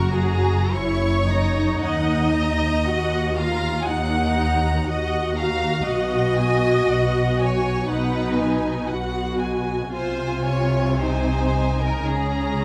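The recording sits in a moderate scoring-stage reverb that lends the strings a spacious, rounded glow, and this short passage is cut from a longer piece. It is a slow romantic movement for string orchestra in 4/4, moving at roughly 48 to 61 BPM with a rubato feel and a serene, warm mood. A rich, focused first violin section carries the melody high above, while a clear second violin section, set up front yet with a distant quality, shapes a second line beneath it. A dark viola section with a smooth top supplies the accompaniment, and the bass is held by a warm, expressive cello section with portamento, together with a soft-attacked, distant double bass section. All five sections play bowed with vibrato throughout the full 12.6 seconds, as the harmony drifts from F# through D#m and G#m7/B to G#/B#, settling on F#/C# at 12.1 seconds.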